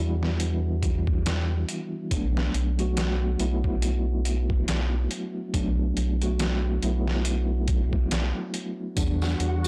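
A slow, swung 4/4 trip hop groove at 70 BPM sits in B minor, its smoky, brooding mood set by a gritty, pitched-down sampler-style drum kit that enters at 0.2 seconds with a thumpy kick, medium-tuned snare and hi-hat, compressed, overdriven and pushed up front. Beneath it, a round analog bass holds the low end from the start, deep and dark with a fast attack and sustained notes, also placed forward in the mix. A mellow tine electric piano carries the accompaniment through tremolo and tape echo, moving from Em7 to Bm7 and back to Em7 near the close. In the final moments, tambourine and triangle, along with egg shaker and group handclap, arrive at 9.0 seconds, and a flickering, grainy texture with a detuned, slow-blooming tone and its own reverb drifts in at 9.2 seconds. The overall sound is dry and blown-out, with a heavily overdriven character, and the clip is cut from a longer piece.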